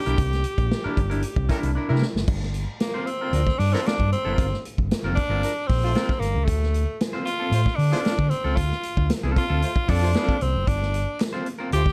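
A straight 4/4 funk groove at 114 BPM in G dorian sets a sly, cool mood, driven by a punchy, up-front big-band drum kit and a round, overdriven fingered electric bass, with a twangy electric guitar at the edge of break-up accompanying over C9, Gm11 and Dm7 chords in a small, dark-sounding room. After a band accent and a drum fill, a raspy, gritty tenor saxophone with light vibrato takes a forceful solo from 2.3 seconds, backed by a tight, clear horn section playing a second line. A crisp group handclap sits briefly in the background near 11.2 seconds, just before this cut from a longer piece ends.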